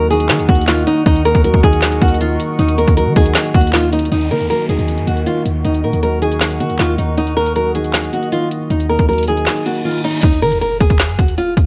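A trap drum kit with a hard-clipped kick sits up front in this eerie, hard-hitting hip hop excerpt at 157 BPM in a half-time feel, its woody snare, metallic hats, handclaps and crash cymbal riding over a deep, boomy sine 808-style bass in Eb minor. A small, fingerpicked nylon-string guitar carries the melody against a soft, boxy felt-muted upright piano with audible action noise, while a warbling, detuned lo-fi pad with chorus hovers in the background on an Ebm7 chord. Electronic sound effects enter at 4.1 s, the kick drops out at 9.5 s under a reverse cymbal, and an impact lands at 10.2 s as the harmony shifts to Eb5.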